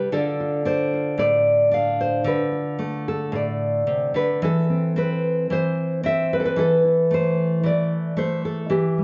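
A straight 4/4 pulse at 112 BPM carries this intimate, melancholic folk excerpt in A minor, where a solo nylon-string guitar, up front with light reverb, thumb-plucked in a classical manner with the warm tone of fresh strings, spans A2 to F5 over 9.0 seconds as the harmony moves from Dm7 to Am/E at 4.4 seconds.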